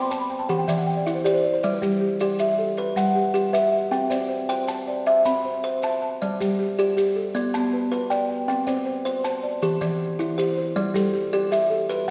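A southern African traditional piece built on an mbira-style interlocking cycle, this short clip from a longer work moves in a straight 12/8 feel with a hypnotic, rippling mood. The kalimba sits up front with arpeggios that are woody and ringing, its fingertip plucks carrying a vintage, band-limited character. Beneath it, a buzzing marimba played with soft mallets weaves its own arpeggios, its hardwood bars sounding round, dark and smooth, and it opens with a fill in the first 1.6 seconds. Grainy, compressed maracas join at 0.1 seconds and run through to the end as a low, saturated presence. The harmony circles through E minor, G, C and B minor, and a wet reverb fills a church-like hall around the ensemble.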